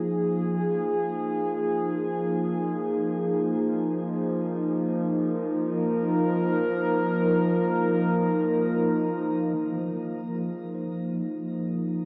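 Spacious and melancholic, this ambient passage in free time, cut from a longer piece, rests on a single F minor seventh chord in F minor, tuned slightly low at A4 = 439 Hz. A warbly, nostalgic tape-like pad sits up front throughout, its detuned sawtooth and triangle tones softened by a slow attack and long release, with chorus, built-in reverb and shimmer reverb adding lo-fi haze. At 10.3 seconds a very quiet, clean tine electric piano joins with mellow arpeggios, all set in a vast cathedral-like space with a cassette-tape grain.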